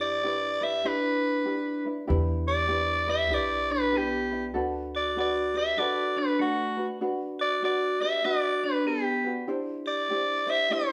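Relaxed and sunny, this short Hawaiian excerpt in E minor swings gently at 97 BPM, with a raspy, gritty soprano saxophone carrying the melody up front with light vibrato and a smooth top, a ringing, metallic vibraphone struck with hard mallets adding a second line, a thumb-plucked ukulele lending light accompaniment, and a woody, dark pizzicato upright bass underneath, all heard as a band playing live in one stone room over chords moving from Em7 through Bm7/D and Em9 to Am7.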